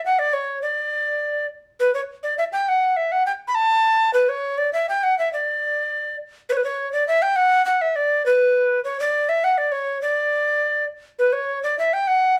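In a straight 2/4 at 102 BPM, this festive, rustic medieval excerpt in D major features a lone tenor recorder playing a melody between B4 and B5 across its 12.4 seconds, stating the same section twice with the repeat arriving at 6.5 seconds. The close-miked recorder sits up front with a woody, airy, straight tone, a soft attack with a touch of chiff, and an unsteady quality. A moderate studio reverb gives the sense of a live room around it.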